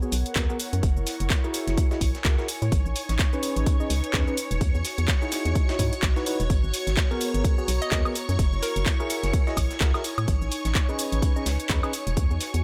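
A punchy electronic kick drives this soulful, bittersweet piano house passage at 127 BPM in 4/4, with a 57% swing on the sixteenths, joined by a house kit of handclaps, warm hats, shaker and woodblock and a very quiet, gritty sampler-style breakbeat layer of hi-hat and snare. Up front sits a dark, hollow FM bass with an organ-like character and fast, decaying notes, pumping against the kick. A mellow percussive organ stab plays a riff through lush chorus and delay, while a shimmering vintage string machine holds bright violin chords and an airy, breathy pad hovers in the background, both also pumping with the sidechain. The chords cycle through G#m9, F#9, Amaj9#11 and Emaj9, giving the harmony a yearning, jazzy colour. Between 7.8 and 9.3 seconds a bouncy, detuned square-wave pluck adds a brief melodic figure with a filter sweep, chorus, delay and a cassette-tape tint. The sound is dry and close, with little reverb, and the passage is cut from a longer piece.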